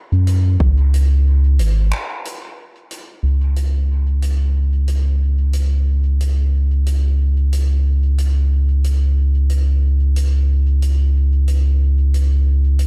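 A round analog bass opens this hazy, spacious ambient dub from about 0.1 s. It sits up front with a deep, sine-like tone, a fast attack, sustained notes and a filter sweep. At 0.6 s a single overdriven electronic kick lands, layered and re-recorded in a large room, then drops out almost at once. Behind the bass, a soft-mallet drum kit with finger snaps and hi-hat stays far back in the mix, its natural, hall-like sound trailing a dub echo over a gently swung sixteenth-note feel. A short break at 1.9 s gives way to a longer second section that carries the bass and kit through to the close of this passage, which is cut from a longer piece. The production is dark and warm, with little reverb.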